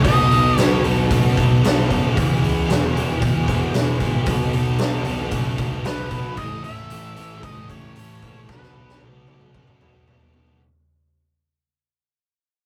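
A big, natural-sounding acoustic drum kit sits up front with a fat snare and punchy kick, closing on a fill from 8.5 seconds, in this wistful, dreamy shoegaze and dream pop excerpt that fades out throughout. A dark octave-fuzz lead guitar carries the melody, returning at 5.9 seconds over a biting overdriven guitar riff, while a thick fuzz guitar and a round, overdriven picked bass hold the background across a B7, E and A progression. The rough rehearsal-room recording has a wet booth ambience.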